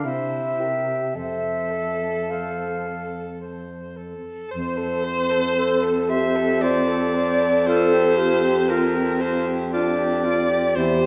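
A slow, rubato pulse in 3/4 drifts between 52 and 59 BPM, giving this tender, serene classical fragment for single-reed quartet an unhurried, breathing feel in F major, tuned slightly low at A4 = 437 Hz. The clarinet carries the melody with a dark, distant, roomy tone that sits back in the mix. The alto saxophone sings a second line with bright, smooth-topped vibrato and is placed up front, while the tenor saxophone supplies accompaniment with a mellow, vintage vibrato. Underneath, the baritone saxophone anchors the bass with a shadowy, forward tone and light vibrato. The harmony opens on C7 before settling onto F, later moving to G5 over F at 7.7 seconds, all within a wet recital-hall reverb heard from further back in the room, with a lingering 1.5-second tail.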